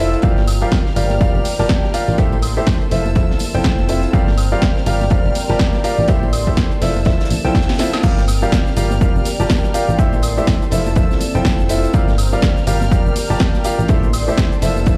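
Piano house at 123 BPM in G dorian, soulful and bittersweet, with a swung sixteenth feel as a clear baby grand piano riff, touched with digital delay, cycles through Gm7, Am7 and Fmaj7 over a round, mellow FM bass and an overdriven, up-front electronic kick that enters at 0.2 seconds. A punchy analog drum machine adds snare, hi-hat, cabasa, woodblock and crash from 0.5 seconds, with a drum fill at 7.5 seconds, while ringing tambourine and congas and a very quiet, dry reggae kit with a high-tuned snare sit underneath. Lush bowed strings with vibrato hold sustained chords in the background as a deep, moody sawtooth pad with chorus adds a sustained texture, and the piano, bass, strings and pad pump against the kick, all played through a big sound system in a bare stone room.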